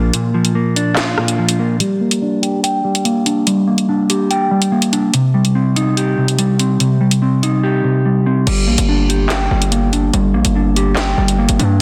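The recording sounds dense and heavily limited, with light digital reverb around a dark, ominous drill beat in G minor at 144 BPM, felt in half-time. A clean, fingered electric guitar runs through the whole excerpt from Bb2 up to G5, its mellow tone softened by a low-pass filter, and from 1.8 to 8.5 seconds a filter sweep moves across it. The electronic drum kit enters at 0.1 seconds with a sharp snare, bright hi-hats, rim clicks, handclaps and crash cymbal, though the kick stays muted until 1.8 seconds and the drums drop out from 7.6 to 8.5 seconds. The distorted 808-style bass, a saturated sine with a noise layer and a fast, decaying attack, sits heavy and aggressive between G1 and G2, returning at 8.5 seconds after a brief touch at the very start. The chords move from Bb to Gm, then Cm, and back to Gm as the bass lands, in a fragment cut from a longer piece.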